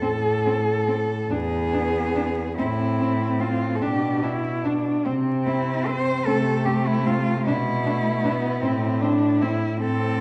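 Serene and tender, this short classical excerpt for cello ensemble moves in a lilting 6/8 with a gently flexible rubato, its four muted cellos played con sordino with a dark, veiled timbre. A close, up-front cello carries the vibrato-laden melody over a bowed accompaniment line and a background bass, while a second line played with light vibrato and a soft attack joins at 1.3 seconds. The harmony drifts from A minor through Bmadd11 and C6 before returning home, all bathed in a recital-hall reverb with a touch of vinyl crackle.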